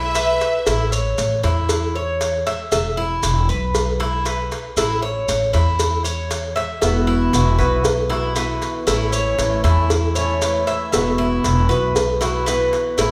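An up-front, metallic Cuban tres picks double-stringed arpeggios through this relaxed, danceable Cuban son and guajira excerpt at 117 BPM, over a woody, thumpy pizzicato upright bass, while a biting bowed violin section sounds only for the opening 0.9 seconds, a round, low-tuned cowbell and grainy maracas join at 0.2 seconds, and a boxy fingerpicked swing-style acoustic guitar enters at 6.8 seconds, all set in a large, reverberant room as a band playing live together.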